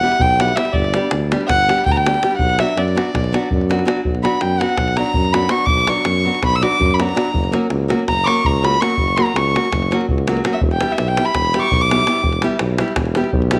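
Balkan folk in the manner of a wedding band, restless and bittersweet, moves in a straight 9/8 through this short cut from a longer piece. A single bowed violin with a reedy, gut-string period tone carries the melody up front until 12.3 seconds, while a small nylon-string guitar is fingerpicked underneath with audible finger squeak. A mellow, smooth-topped tuba with light vibrato holds the bass up front, and a tight, close and dry davul keeps the percussion, all set in a small echo-chamber room.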